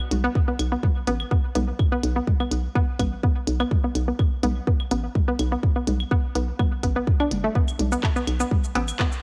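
Heard through a cassette home recording with digital ambience and cut from a longer piece, this hypnotic, quirky minimal techno groove at 125 BPM in 4/4 rests on a layered, punchy electronic kick up front, a mellow, knocking FM bass with sidechain pumping between F#1 and B1, a detuned, hollow square-wave pluck riff from A3 to D4 bouncing with chorus, tape echo and sidechain pumping, a minimal click kit of clicky hi-hat, handclaps and shaker, and tape-warm electronic claves, toms, cowbell and woodblock with analog delay tucked in the background.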